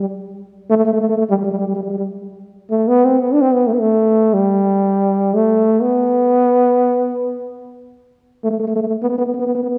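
This Persian modal ensemble piece opens on a stately, festive fragment cut from a longer work, played in free time with tuning set to A4 = 439 Hz. A single mellow trombone carries the music alone from 0.0 to 9.8 seconds, sitting up front and moving between G3 and D4. Its tone is punchy and forceful yet keeps a smooth top, with light vibrato and scooped notes that lend a jazz-style inflection to the modal line. The opening phrase lasts until 2.3 seconds, then the same material returns and stretches out to the close. A moderate scoring-stage reverb with a 1.9-second decay surrounds the horn, giving it a spacious, ceremonial bloom.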